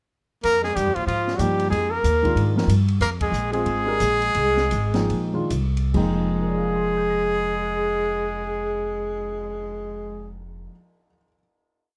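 A punchy, close-miked trumpet leads this short, searching modal jazz piece with a forceful, freely wandering melody, shadowed an octave below by a raspy, growling tenor saxophone with scooped notes and light vibrato. Underneath, a woody pizzicato upright bass walks, a small-room drum kit keeps a ride cymbal pattern with dark cymbals, a high-tuned snare and a punchy kick, and a mellow grand piano enters at 1.4 seconds with syncopated quartal comping. The cool, swinging band slows from 3.0 seconds, hits an accent at 3.2 seconds and settles onto a final chord.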